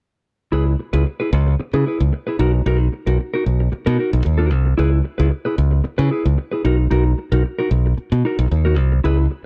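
A straight 4/4 pulse drives this short disco excerpt, danceable and full of forward push. A fingered electric bass carries the low end with a bright, direct tone that sits up front and stands as the louder of the two parts. Beside it, a clean electric guitar plays accompaniment in a narrow upper-middle register, its fingered sound dark and compressed yet still close and present. Both parts play together from 0.5 seconds to 9.3 seconds, moving between C#m7 and Bmaj7 chords. The room is dry, with little reverb, so the pair comes across tight and immediate.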